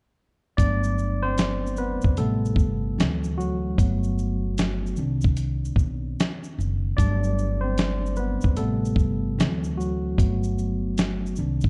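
Nostalgic and dreamy, this lo-fi hip hop excerpt in G major drifts at 75 BPM with a swung 16th-note feel, as a worn, slightly out-of-tune tine electric piano with cassette-tape coloring plays a solo over Gmaj7, Am7, D7 and Cmadd9 chords, backed by a woody pizzicato upright bass and a gritty, compressed sampler-style drum kit of thumpy kick, medium-tuned snare, hi-hat and shaker, all up front in a dark production with light reverb.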